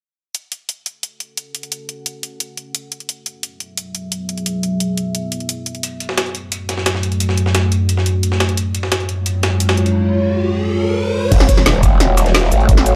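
A straight 4/4 pulse drives this dark, aggressive technical drum and bass excerpt: an up-front overdriven kit with a woody snare, bright hats, cabasa and crash sits over a deep, moody sawtooth pad with chorus and sidechain pumping, a gritty, tape-toned breakbeat kit with a medium-tuned snare joins at 5.8 s, and after a riser the drop lands at 11.3 s with an electronic impact, a knocking overdriven kick and a forward, growling, wobbling, detuned bass.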